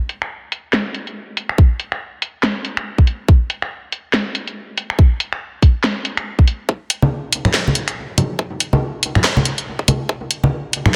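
A dense, heavily limited mix with light digital ambience frames this cavernous, heavy dubstep excerpt in a swung half-time feel. A layered garage kit of finger snaps, warm hats and a cracking snare sits up front from the start, and a tight electronic kick joins at 1.6 s; both were re-recorded in a small room and shaped by filtering. A build-up begins at 6.7 s, and bright, saturated congas played with soft hands enter with dub echo at 7.0 s.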